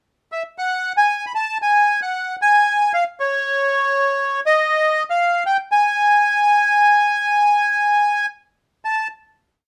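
Tense and melancholic, this brief tango unfolds at 116 BPM in 4/4 with a rubato feel, tuned to A4 = 439 Hz. A solo bandoneon, reedy, bright and airy, sits up front from 0.3 to 9.1 seconds, shaping a motif-based melody of song-like phrases between C#5 and B5, from a short pickup into a single section that settles onto a final note. Moderate studio reverb surrounds the instrument in a rough home-demo mix.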